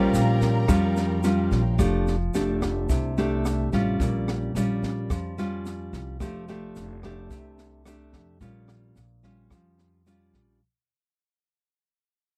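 Bossa nova at 109 BPM, breezy and sophisticated, in a dry, close 1970s-style studio sound, this excerpt fades out from the start as chords move between Bbm6 and F69. An up-front, bright fingerpicked nylon-string guitar and a woody, thumpy pizzicato upright bass carry the accompaniment throughout, joined by a compact cocktail kit with a high-tuned snare, rim click and punchy kick, plus a grainy egg shaker set distant in the background. For the first 1.8 seconds only, a smooth, vintage grand piano sits in the background while a lush bowed string section holds focused, vibrato-rich chords.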